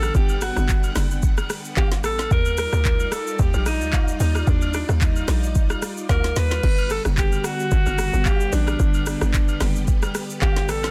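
This is a dry, dense and heavily limited modern mix, cut from a longer amapiano track in G major with a soulful mood. It moves at 111 BPM in 4/4 with a 55% swing on the sixteenths. The overdriven electronic drum kit sits up front, with a deep kick, woody snare, metallic hi-hats, crash, handclaps, rim clicks and shaker. A hollow, bouncy log drum bass with a fast, decaying FM attack and a noise layer plays underneath, while agogo bells and woodblock sound acoustic and distant, set back in a large room. A vintage string machine holds shimmering, bright sawtooth violin chords with a slow attack and ensemble chorus, moving from Gmaj7 to Ebmaj9 at 2.3 seconds and back to Gmaj7 at 6.6 seconds, just after a drum fill that begins at 6.1 seconds. On top, a breathy, punchy alto saxophone carries a smooth pop-style solo melody with light vibrato and tape echo.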